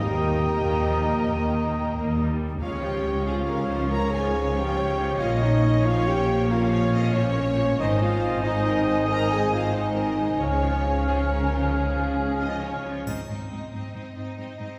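Soaring and heroic, this cinematic adventure-score fragment moves in a rolling 12/8, with a lush, vibrato-rich violin section carrying the melody over rich, focused cellos and double basses, a warm, roomy French horn section holding sustained chords, and a clear, distant trumpet adding stabs. Around them, oboe, a dark, very quiet clarinet, a mellow, hollow flute and a second, intense violin section weave supporting lines, while smooth violas accompany, a soft trombone section sustains chords and timpani give a barely audible opening touch. The whole orchestra sounds heard from further back in a reverberant concert hall, and a close, dry triangle appears at 13.1 seconds as the music settles onto a new section.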